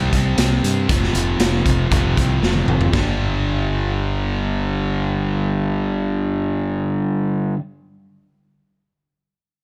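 A straight 4/4 hard rock groove at 117 BPM drives this anthemic, swaggering excerpt, where a bright distorted guitar riff up front and a crunchy overdriven guitar in the background ride over C5, F5 and G5 power chords, a growly fuzz-laden fingered bass pushes underneath, and a raw, gritty garage drum kit with a punchy kick and a pumping small-room sound plays a fill at 2.4 seconds before dropping out at 3.1 seconds, all in a dry mix.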